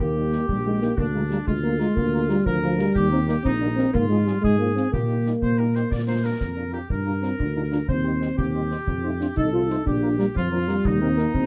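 In a straight 6/8, this spirited, festive military-style march for wind band sets a dark euphonium and a clear woodwind section on the second line over a mellow tuba and close concert bass drum and snare drum with dark cymbals, while a soft-attack cornet carries the melody with vibrato in the background and a French horn section fills in behind, captured with light reverb and close, detailed microphones in a short cut from a longer piece.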